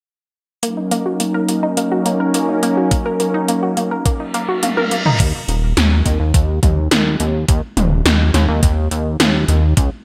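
Synthwave at 105 BPM with a nostalgic, driving mood, opening on a brassy, detuned analog pad holding an Ebm7 chord with sidechain pumping while a round analog pluck spins chorused arpeggios under a filter sweep, and up-front 80s electronic pad drums with metallic hats and an overdriven, gated snare play from the start; a thumpy, tape-warm electronic kick joins at 2.9 s, then a reverse cymbal and drum fill lead into 5.2 s, where the pad and pluck give way to a glossy pulse-width synth bass pumping alongside the drums, all set in bright 1980s-style digital production with plate reverb.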